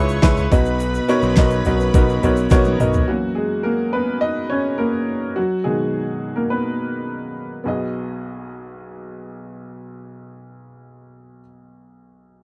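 Uplifting and hopeful, this piano-driven pop piece opens with a full band: a clear, woody upright piano up front, a smooth, bowed violin section carrying a second line, a growly overdriven electric bass, a produced pop drum kit with a knocking kick and fat snare, and a grainy egg shaker tucked in the background. A drum fill at 2.5 seconds closes that opening, and from 3.1 seconds the slightly detuned, worn-sounding piano carries on alone with a solo over chords such as F#7 and B6. The dry, close 1970s-style studio sound has only light reverb.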